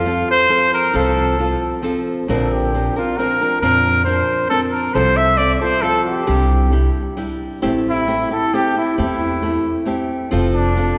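Festive and romantic, this short mariachi excerpt in F major moves at 135 BPM in a straight 3/4, with a warm, vintage, classical-style solo trumpet carrying the melody up front over a small-sounding, fingerpicked nylon-string guitar placed close by and a woody, thumpy pizzicato upright bass on gut strings, the trio set in a resonant church reverb with a 2.7-second tail as the harmony moves from F through Bbadd9, Cadd9 and Am7 back to F.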